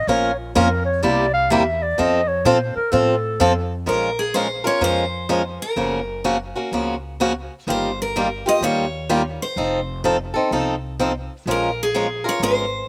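Swung eighth notes in a brisk four drive this bittersweet, fiery slice of acoustic string swing in the gypsy jazz manner, cut from a longer piece. A breathy clarinet opens with a short solo, its whispered, close-miked tone carrying a soft attack and a gentle vibrato before it drops out at 3.8 seconds. Beneath it, a woody, thumpy upright bass on gut strings plucks a dark low line, while a boxy swing-style acoustic guitar sits up front with its comping, faint finger squeak and a slapback echo giving the chords a snappy double edge. At 3.9 seconds a picked steel-string acoustic guitar takes the melody with a bright, fresh-stringed sound, ringing from a forward spot as the harmony moves through lush minor-seventh and major-seventh colours. The sound is dry and intimate, caught in the open air with little reverb around the instruments.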